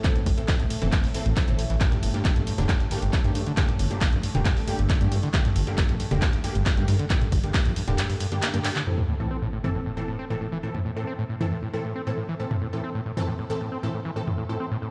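Heard as if blasted through a big sound system in a bare stone room, this excerpt of driving, intense peak-time techno carries a light reverb and runs at 136 BPM in a straight 4/4, set in A phrygian and moving from Am to Gm and back to Am. An up-front, punchy analog kick anchors the groove alongside an electronic drum machine supplying handclaps, hi-hat and toms, while a very quiet, sampler-style breakbeat kit adds a compressed, pitched-up, high-tuned snare and hi-hat with tape grit. Underneath, a dark, detuned sawtooth bass rumbles and beats with saturated sustain and sidechain pumping, and a squelchy acid bass riff with a resonant filter sweep is pushed through distortion, cassette tape and tape echo. Aggressive, bright rave stabs built from thick unison saws use a filter pluck and a moving notch, soaked in chorus, built-in reverb and tape echo, while a vintage, warbling analog drone of pulse-width-modulated tones evolves in the background. 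The kick drops out at 8.0 seconds, a drum fill follows, and at 8.9 seconds an electronic sub drop hits as the drone and breakbeat kit fall away, leaving the acid bass, stabs and drum machine to push on.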